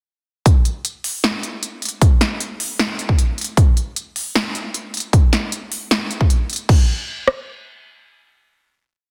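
Future bass in a bright, euphoric half-time feel: a short whole piece whose drop runs from 0.5 seconds to 6.7 seconds, with a big-room dance drum kit up front. One layer carries a punchy kick and rim click until 7.4 seconds, while a quieter layer adds a punchy snare, crisp closed and open hats with rolls, and crash until 6.8 seconds, all re-recorded in a large room with a tape-warm character and a dense, heavily limited modern master before the final hit.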